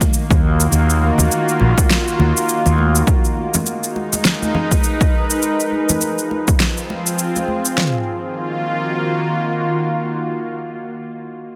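Hypnotic and earthy, this organic downtempo excerpt moves at 102 BPM with a swung 16th feel in Eb minor, cycling through Ebm, Abmadd9 and Fdim before returning to Ebm. A tense, detuned sawtooth drone with ring modulation, vibrato and a slow attack sustains string-like chords up front under sidechain pumping, while a punchy, overdriven deep house kit and a layered electronic shaker and fat snare drive the groove, with ringing, close congas in the background. A bright, growly fretless electric bass plays only from 0.3 to 3.0 seconds, and the percussion drops out by 7.9 seconds, leaving the drone alone in a lush hall reverb until 10.9 seconds.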